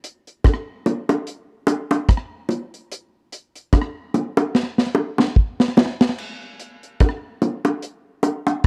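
Sunny and uplifting, this short reggae excerpt rides a 4/4 groove at 73 BPM with a gentle swing on the sixteenths. A deep acoustic drum kit carries it from the start, its kick tight and its snare tuned high, with rim clicks, hi-hat and crash cymbal sitting in a dark, smooth sound whose top is rolled off. A slapback echo trails the kit, giving it a short shadow. Bongos join at 0.4 seconds, tight and high-tuned under soft hands, placed up front alongside the drums with a small-room air. A drum fill runs from 4.5 to 6.2 seconds before the groove returns to the same section. The whole recording has the dry, close feel of a 1970s studio with a touch of studio reverb.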